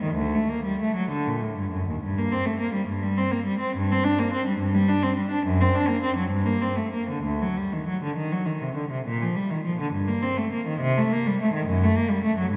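A long, wet church reverb, ringing for about 3.6 seconds, sets this recording in a resonant church space heard from further back in the room, while the cello itself sits close and up front. It is a grave, solemn baroque-style suite movement in G minor, played by a single unaccompanied cellist from 0.0 to 12.6 seconds as a fragment cut from a longer piece. The tempo moves between 61 and 74 beats per minute, counted in dotted quarters within 6/8, and the player shapes it with a free, rubato feel. The bowed cello has a rich gut-string tone in period style, with a reedy edge. Its line ranges from D2 in the low register up to D4.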